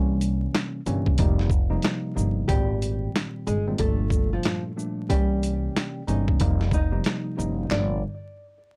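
Boom-bap hip-hop at 92 BPM with a 16th-note swing, moody and dark, cut from a longer piece and dry apart from a layer of vinyl crackle. A worn, slightly out-of-tune tine electric piano and a woody pizzicato upright bass sit up front through chords like C7b9, F7sus4 and Abmaj7, while a gritty, pitched-down sampler kit with a thumpy kick, medium-tuned snare, handclaps, hi-hat and shaker comes in at 0.2 seconds. A thumb-plucked flamenco guitar carries the melody from 2.5 seconds, filtered and trailed by tape echo.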